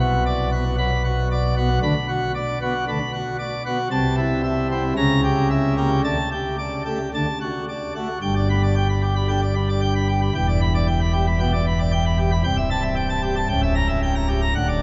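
Jubilant and brilliant, this classical organ toccata excerpt in G major moves at 114 BPM in a straight 4/4, with a solo pipe organ on full plenum and mixtures, its baroque voicing and crisp chiff sitting up front across a span from C1 to B5, as the harmony travels from B minor through a C#dim7 to a Dsus4 resolving to D before a new section opens on G at 8.2 seconds and turns toward Em7 and Am7/C, all set in a dark production bathed in a long, wet cathedral reverb.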